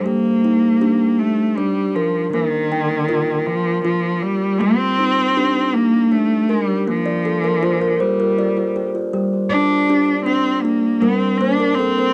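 Hypnotic and meditative, this short world piece drifts along at 53 BPM in a slow 6/8, rooted in G minor and tuned a touch below standard pitch. A rich, focused cello carries the melody from the first moment, its bowed line sung with vibrato and a smooth top, sitting up front. Beside it, a woody kalimba plucked with the thumb spins out ringing arpeggios, dark and smooth in tone, with a tape echo trailing its notes. The harmony simply rocks between G minor and B-flat, and the kalimba breaks into fills at 7.1 seconds and again at 11.4 seconds. Both parts carry the soft grain of a cassette home recording, set in a small room with a moderate touch of reverb, and the clip is cut from a longer piece.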